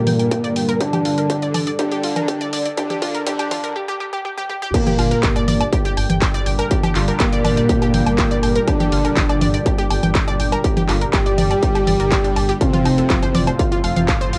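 A light, lo-fi haze hangs over this cut from a longer melodic techno track, which sounds like a home cassette recording with a touch of reverb. At 122 BPM in G minor, the mood is driving and melancholic. It opens on a build-up where a filter sweep moves through the airy, detuned resonant pad, drum fills arrive, and a very quiet, warbling analog drone murmurs underneath, before a brief break gives way to the drop at 4.7 seconds. A distorted, up-front electronic kick, re-recorded in a large room, anchors the groove, with a layered techno kit of congas, handclaps, warm hi-hats, toms, woodblock and crash cymbal pumping around it. The deep, rumbling detuned saw bass arrives at 5.0 seconds, while a round, decaying analog pluck spins arpeggios above. Carrying the melody is a smooth, expressive portamento lead with vibrato and tape-soaked delay, shadowed in the background by a fat, wave-folded polysynth on a second line, as the harmony holds on G minor before shifting to F near the end.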